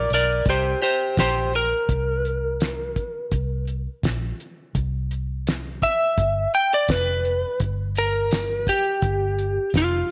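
A straight-eighth groove in 4/4 carries this short, gritty and soulful blues fragment, cut from a longer piece. A cloth-damped drum kit sets the pulse with hi-hat, tight kick, fat snare and tambourine, its sound dry, dark and thuddy with a rolled-off top. Underneath, a vintage muted electric bass played with the fingers sits low and round, its foam-muted tone punchy and amped. Over them, a lightly driven lead guitar solos from the first moment to the end at 10.1 seconds, slightly broken-up and compressed, with a slapback echo trailing its picked notes. The harmony moves from C5 to a G7 chord at 6.2 seconds, and all three parts sit up front in a light studio reverb.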